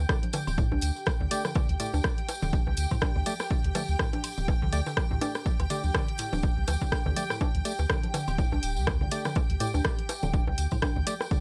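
A swung 4/4 pulse drives this clinical, sparse minimal techno clip, where an up-front, tape-tinged electronic kick and a punchy analog drum machine's hi-hat and rim click sit in a small room alongside a close, jingly tambourine and layered congas, bongos and cowbell trailed by tape echo. A deep, thick sub bass pumps against the kick while a hollow, detuned square-wave pluck riff with a moving notch filter bounces through chorus and dub echo, and a blurred granular cloud pad hangs high in its own reverb. From 1.3 seconds, a percussive, organ-like stab with a noise layer joins, mellowed by chorus and tape echo, over a single suspended chord.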